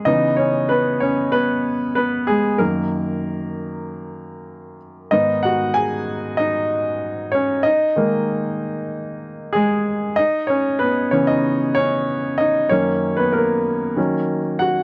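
A clear, polished baby grand piano plays alone and up front for the whole 14.8 seconds of this pop piece, moving through C#m7, F#6, G#m and D#sus4 before circling back and landing on D#m7. The mood is driving and dramatic at 95 BPM in a straight 4/4, with the piano ranging from F#2 to G#5 and tuned slightly below standard pitch at A4 = 437 Hz. The sound is a dry, close 1970s-style studio recording touched with light reverb, cut from a longer piece.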